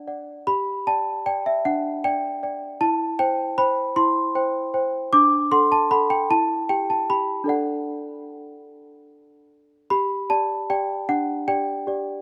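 A worn celesta plays alone in this short classical lullaby, its bell-like, delicate tone sitting up front, slightly out of tune and struck with medium felt hammers across a range from D4 to D6. In 6/8, the harmony moves from G through C over E, D and E minor before returning to G at 9.9 seconds, giving an innocent, dreamy mood. Light reverb and small-room ambience frame the rough home-demo sound, and the passage is cut from a longer piece.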